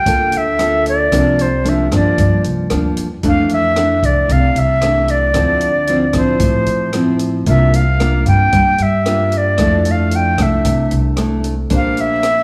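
A reedy silver concert flute, a fingerpicked nylon-string guitar and a pizzicato upright bass begin together at 0.0 seconds, with a compact cocktail drum kit joining at 0.1 seconds in this breezy, romantic bossa nova cut from a longer piece. The flute carries the melody up front with an airy, straight tone and tongued notes, its highs gently rolled off, moving between C5 and G5. Beside it the classical guitar sounds full-bodied and close, while the woody steel-strung bass holds the low end and the drums offer a punchy kick, hi-hat and rim click with a mid-forward, tight-booth character and a softened top. The harmony drifts through rich extended chords, from Gm9 and C9sus4 to F6 and Dm9, before settling on Bb69 near the end. A moderate recital hall reverb gives the ensemble the gentle bloom of a church or concert hall.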